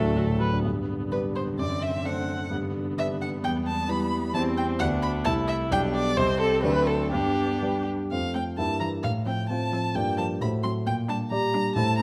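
A piano quartet opens together in a cheerful, graceful classical-period movement in two with a supple rubato, the rich, expressive violin carrying the melody up front with vibrato and portamento over the warm, deep-bassed concert grand's accompaniment, while a smooth, even viola and a focused cello with vibrato sit in the background, all set in light reverb and captured by close, detailed microphones in a passage cut from a longer piece.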